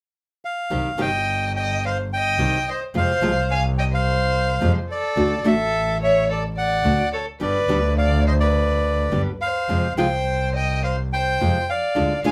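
Heard as a band playing live in one room with moderate studio reverb, this dramatic, tense tango fragment, cut from a longer piece, moves in a rubato feel through C minor, F minor, D and G chords. A reedy, up-front bandoneon carries the melody from 0.4 seconds, joined at 0.7 seconds by a bright, fingerpicked nylon-string guitar and an intimate double bass bowed sul tasto with an airy tone and light vibrato. At 1.0 seconds a distant, rich violin adds an expressive second line with vibrato and portamento.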